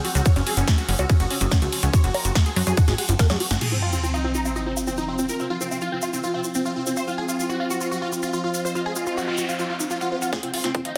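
A big-room dance kit with punchy snare, metallic hats, bongos and cymbals and a funky, plucky analog bass open this intense, alien psychedelic trance at 143 BPM, with a tight, up-front electronic kick joining them, until these fall away by 3.7 s, when a sub drop lands and a filter sweep begins moving through the synths. Over a dense, heavily limited master, a huge, detuned supersaw melody with phaser, delay and sidechain pumping rides above a resonant drone with moving overtones, alongside a dark, woody wave-folded pluck riff with cassette grit in the background and a grainy, bright tube shaker. A lo-fi, nostalgic pad enters at 5.2 s, and a noise sweep and riser build toward a drum fill at 10.3 s, where the kick and kit return.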